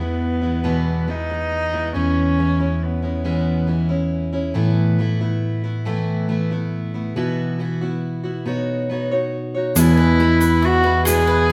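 A slow, unhurried 6/8 pulse at 46 dotted-quarter beats per minute carries this hopeful, gentle acoustic folk excerpt in E major, played live by a small band in one room with a wet, large studio reverb. A picked steel-string dreadnought guitar, bright with fresh strings and placed up front, runs the whole way through, while an overdriven tine electric piano, gritty through a combo amp, holds down the bass line. A bowed cello with a warm, nasal, reedy, period-style gut-string tone sings the melody up front yet sounds somewhat distant, stepping away at 4.1 seconds and returning at 9.8 seconds. The harmony drifts from E through C#m/E, Asus2, Bsus4 and Badd9 before settling back on E, where a picked bowl-back mandolin adds double-strung arpeggios and a grainy tube shaker joins until 11.3 seconds.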